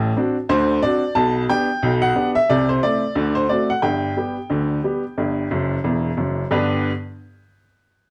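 The recording has a dark, warm production, with a moderate club reverb giving the upright piano a sense of room around it. This brief fragment of a longer ragtime piece is jaunty and cheerful, moving in a swung two-beat metre. A solo upright piano plays from 0.0 to 6.9 seconds, sitting up front with a woody, natural tone, long sustain and audible action noise, and it ranges from E1 to A5. The harmony passes through D7/A, G/B, Am/C and D7 before settling on G. A piano fill at 5.5 seconds leads into a new section that begins at 6.5 seconds, just before the fragment ends.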